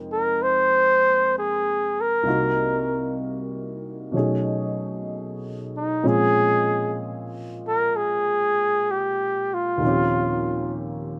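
A woody, slightly detuned upright piano opens this tender, romantic jazz ballad fragment, its intimate accompaniment carrying audible action noise and moving through lush extended chords from Fm11 to Eb13 at a slow, swung 64 BPM in 4/4. A flugelhorn enters almost at once as the up-front solo voice, singing the melody with a soft attack, light vibrato and scooped notes in a jazz style. A light reverb gives the pair a gentle, close-up glow.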